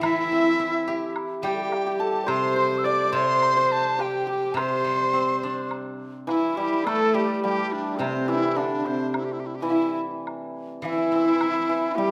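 In a straight, even 4/4, this graceful and festive Chinese chamber piece, cut from a longer work, is led by a large dizi up front, pure-toned with a buzzing membrane, soft attack and expressive vibrato. Beneath it, a shimmering hammered dulcimer, an airy, very quiet low xiao, and a husky, nasal horsehead fiddle with portamento carry second lines, while a silvery steel-string zither played with fingerpicks rings out the accompaniment and a very quiet woodblock ticks close by. A moderate recital hall reverb surrounds the ensemble, and a new section begins at 6.9 seconds.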